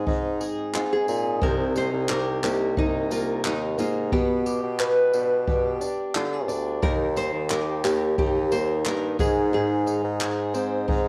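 A bassoon with light vibrato sits up front, carrying the bass line through this wistful, tender acoustic pop piece, beside a dark, shimmering, octave-doubled fingerpicked twelve-string acoustic guitar with a cassette tape tone. From 0.8 seconds a bright, full-bodied nylon-string guitar, also with a cassette tape tone, plays the melody, while a jazz drum kit with brushes, a boomy kick, tambourine and handclaps, plus very quiet, crisp group handclaps, keeps time. A reedy, mellow electric piano with fast tremolo is heard only until 1.4 seconds, and the home cassette recording is set in light studio reverb.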